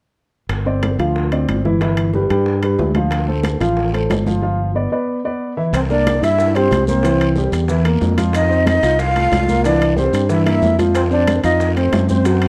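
Afro-Cuban jazz at 184 BPM, lively and sunny, where a punchy electric bass, a woody upright piano with audible action noise, bongos, congas and ringing metal-shell timbales carry a G-based vamp, with a raspy guiro joining at 3.1 seconds, through a break at 4.4 seconds before a breathy flute with plate reverb takes the melody at 5.7 seconds in C mixolydian, joined by a clear trombone second line, grainy maracas and a worn, warbling cassette-tape sheen.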